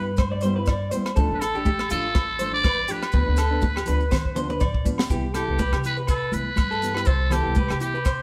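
A lightly swung sixteenth-note groove in 4/4 drives this carefree, danceable highlife guitar band fragment, with a tight funk kit of hi-hat, kick, rim click, snare and toms entering at 0.2 s, its snare high-tuned and its sound dry and polished. Up front, a trumpet with a metal mute carries the melody in a buzzy, raspy jazz style, its scooped notes and vibrato adding a vintage, gritty edge. A twangy, slightly broken-up electric guitar picks bright arpeggios through a small old amp, while a dark, fingerpicked nylon-string guitar plays the accompaniment over a woody, growly pizzicato upright bass. In the background, thin-skinned congas played with soft hands, ringing agogo bells and grainy maracas add light percussion. The chords move from Cmaj7 through Dm to a rootless G7/D, and a drum fill at 4.1 s leads into a new section that returns to Cmaj7 at 5.1 s, the band playing live together in a stone room with moderate reverb.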